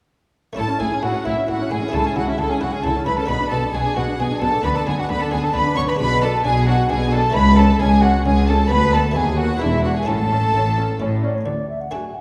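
A recital hall's generous reverb places the listener further back in the room, giving this festive, lively baroque-style concerto movement a resonant glow. Moving at 133 BPM in a straight 3/4 in A major, the clip shows a wooden, pure-toned baroque flute carrying the melody with soft attacks and gentle vibrato, sitting in the background alongside a chamber violin section that also carries the melody with gut-string tone and light vibrato. A second violin line fills in below, while a nasal, dark viola section and a muted, lute-like buff-stop harpsichord, dry and close-miked, supply accompaniment. Underneath, a rich double bass section and a reedy cello section anchor the bass, with the basses dropping out at 11.4 seconds and the cellos at 11.8 seconds. The harmony moves from A through B minor and a diminished chord toward B7 and E7, resolving to A at 10.1 seconds before turning to D, and the passage is cut from a longer piece.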